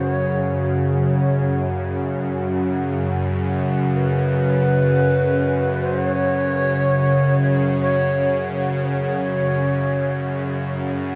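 A huge, wet reverb with a decay of 8.5 seconds surrounds this short dark ambient drone, cut from a longer piece, moving at a slow 61 BPM in 4/4. Up front, a bowed-like drone sits low between F#2 and C#3. Its string-like, tense tone evolves with vibrato and a bright, wave-folded edge over a noise layer. Behind it, a deep, moody pad sustains an F#5 chord spanning C#4 to F#5, its detuned sawtooth and sub-octave layers treated with chorus and its own reverb. An airy bamboo shakuhachi fades in across the passage, playing an expressive straight-tone melody between B4 and C#5 through tape echo until 10.7 seconds. The mood is vast and ominous throughout.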